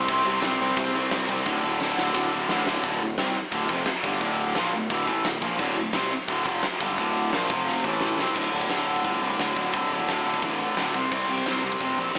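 A tight, bright, double-tracked distorted guitar sits up front, driving a picked riff through this raw, aggressive punk rock excerpt in straight 4/4. Beneath it, a picked electric bass growls with fuzz and overdrive, heard both direct and through an amp. A big acoustic rock kit joins at 0.1 seconds, up front in a stone-room ambience, with a fat snare, a punchy kick, crashing cymbals and hi-hat. The drums break into fills at 1.5 and 7.7 seconds, marking the turns between three short sections, while the harmony moves mostly through power chords with a single minor chord early on. A moderate studio reverb and a small-speaker sound give the whole recording a compact edge.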